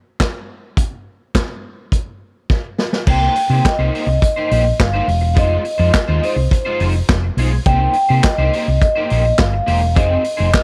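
A gritty, saturated vintage drum kit opens this danceable, driving disco clip in C minor at 105 BPM, with a punchy kick, handclaps, hi-hat, snare and dark crash cymbal playing alone from 0.2 seconds until a drum fill at 2.5 seconds. At 3.1 seconds, a ringing, metallic vibraphone with slow motor vibrato takes the melody, and a round, hollow-body fingered electric bass sits up front beside it. A twangy, slightly broken-up electric guitar with ensemble chorus adds picked accompaniment over Cm7 and Fm7 chords, all in a dark production with small room ambience.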